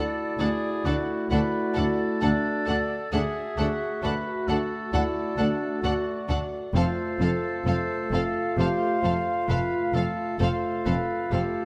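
Cinematic, emotional orchestral film score at a rubato 66 BPM in 4/4, bittersweet and full of longing, in which a lush, distant violin section carries the melody over a second violin line in the background while an airy, crisp flute, a roomy oboe and a warm clarinet weave second lines above mellow, smooth-topped French horn chords, with very quiet expressive violas, soft-attack cellos and dark, woody double basses joining at 0.4 s, all in light reverb as the harmony moves from D to F at 6.7 s in this brief fragment of a longer piece.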